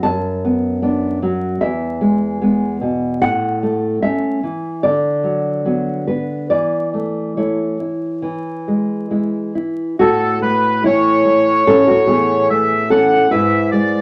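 Serene and tender, this romantic duo excerpt opens with an up-front, thumb-plucked nylon-string guitar alone in a rubato 4/4, its warm classical accompaniment moving through gentle chord changes before a reedy, vintage, band-limited bandoneon enters at 10.0 seconds with the melody, all set in a club reverb with a veil of vinyl crackle.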